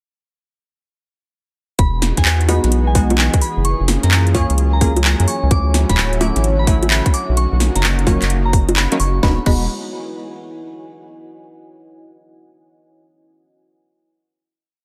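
Lightly reverberant, this short, bouncy and sunny two-step UK garage piece drops in at 1.8 seconds with a tight, overdriven two-step kick, a cracking, up-front house kit of skipping swung metallic hats, rims, claps, bongos and crash, and a rubbery, hollow square bass line, while a soft, warbling FM bell riff with phaser and delay floats over a smooth analog pad, punchy, nasal detuned chord stabs moved in parallel through bright major-ninth changes, and a deep, moody ambient pad that lingers alone on the final chord until 11.1 seconds.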